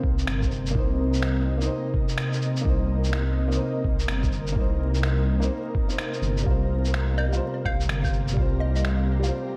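Wistful and melancholic, this short future garage excerpt moves at 126 BPM in C minor with a swung 4/4 feel, resting on a single Cm7 chord. A muffled, thumpy kick and pitched-down shaker, finger snaps and claves sit under a deep, rumbling detuned saw bass, while an ethereal pad with ensemble chorus and a dark, woody upright piano, both carrying 12-bit sampler grit and sidechain pumping, fill the middle alongside a faint flickering grainy texture. At 7.2 s a hollow, bouncy square pluck adds a brief melody with chorus and delay, all within a dreamy, reverb-soaked hall mix dusted with vinyl crackle.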